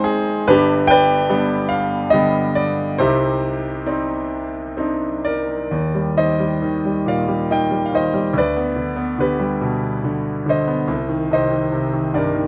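A bright concert grand piano, brilliant in tone and deep in the bass, plays a tender, calm classical solo in a three-beat rubato, moving from G to a C minor add-nine harmony and then, from 5.7 seconds, a second phrase through Eb and G/D to close on C minor, all captured up front by close, detailed microphones with light reverb in this piece cut from a longer work.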